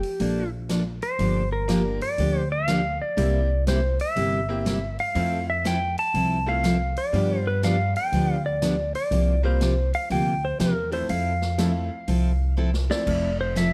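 Light reverb gives this short country and western swing clip, cut from a longer piece, a natural, roomy sound, with the drums set back in a big space and the upright bass up front. At 121 BPM in 4/4 with a swung eighth-note feel in F major, the mood is down-home and playful. A clean electric lap steel carries the melody with a twangy, compressed slide tone and volume swells. The steel-string dreadnought acoustic guitar, picked and full-bodied, and the woody, growly pizzicato upright bass both join at 0.2 seconds. A metallic, jangly tack piano with a bright vintage bite adds accompaniment from 1.7 seconds. The swinging big-band kit, with a punchy kick, medium-tuned snare, hi-hat and crash, plays a fill at 12.6 seconds as the harmony moves from Bbmaj7 through Gm7, C7, Fmaj7, G7 and C7sus4 to a closing Fmaj7.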